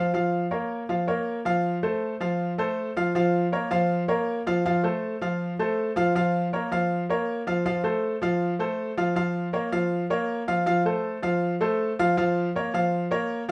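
Latin piano solo, fiery and driving, cut from a longer piece, with a bright baby grand carrying everything alone from the first moment to about 13.5 seconds. The harmony swings steadily between B-flat minor and F, and the piano sits up front with a brilliant, natural tone and long sustain in a small, moderately reverberant room. A short opening passage gives way at 3.1 seconds to a longer stretch that keeps the same two-chord pull going.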